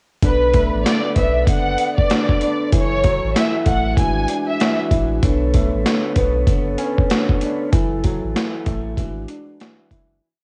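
Gritty, pitched-down sampler drums with a thumpy kick and high-tuned snare hit hard up front in this tough, dark boom-bap hip-hop piece, over a deep, round sine sub bass, a worn, woody, slightly detuned upright piano arpeggio and a soft, flute-like tonewheel organ pad turning through a slow rotary speaker, while a lush bowed violin section repeats a short, expressive looping melody until 4.8 seconds, before the home-cassette-recorded loop fades out from 7.7 seconds.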